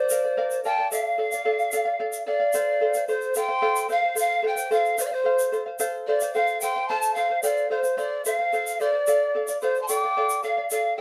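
A polished, airy pan flute carries the melody up front, its soft attack and vibrato close-miked, alongside a breathy, reedy large quena that traces a second line with tongued chiff and rolled-off highs. Beneath them a shimmering, fingerpicked charango with double strings, some octave-doubled, holds the accompaniment, while a grainy, bright egg shaker in a small room keeps time from 0.1 seconds. This Andean folk excerpt moves in a straight 6/8 at 74 BPM in dotted quarters, tuned to A4 = 435 Hz, passing from Bb and Dm to a long stretch on F before Dm returns at 9.1 seconds, all within a wet studio reverb that gives it a festive yet wistful mood.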